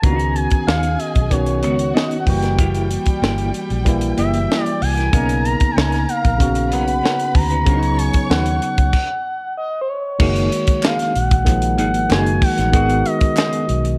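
A lush 1970s-style soul groove opens at once in F# major at 95 BPM, with an expressive sawtooth synth lead carrying the melody up front, its smooth, evolving tone colored by chorus, vibrato and a slapback echo. Beneath it, a barky, bright tine electric piano plays clean accompaniment through a combo amp, while a round, punchy, foam-muted fingered bass and a tight funk drum kit, with its high-tuned snare, kick, hi-hat and crash in a small room, sit close and mid-forward. A semi-hollow electric guitar adds a clean, fingered riff with tremolo in the background, and a distant, bowed symphonic violin section supplies a dark second line with vibrato until the music stops at 8.9 seconds. After the pause the groove returns for a new section over chords like F#69 and G#m7, and from 10.8 seconds crisp, saturated group handclaps join in the background. The romantic mood is wrapped in a dark, warm studio reverb, and the clip is cut from a longer piece.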